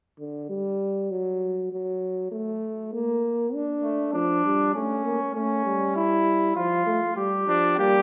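A mellow trombone with a light vibrato and a vintage character opens this solemn, driving classical brass canzona at 0.2 seconds, laying down the accompaniment at 99 BPM in 3/4. A warm flugelhorn with a soft attack and a distant, roomy quality joins as the second line at 3.8 seconds, as the harmony moves through Dm, A, F and Gm. A clear trumpet takes up the melody at 7.5 seconds just before this fragment of a longer piece cuts off, all set in a dark production with a wet recital hall reverb.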